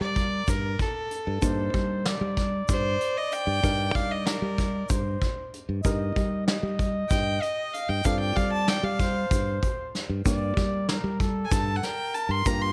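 A lightly reverberant, brooding and tense progressive instrumental in G minor moves in 7/8 at 190 BPM, where a rich, reedy gut-string violin solos up front with light vibrato over a mellow, scoop-noted flugelhorn second line, a dark, short-sustained grand piano in the background, a growly, punchy fingered electric bass, a vintage brush drum kit with a punchy kick and rolled-off top, and a grainy egg shaker, all cut from a longer piece over chords from Gmadd9 through Cm7/G, Eb/G and F/G back to Gmadd9.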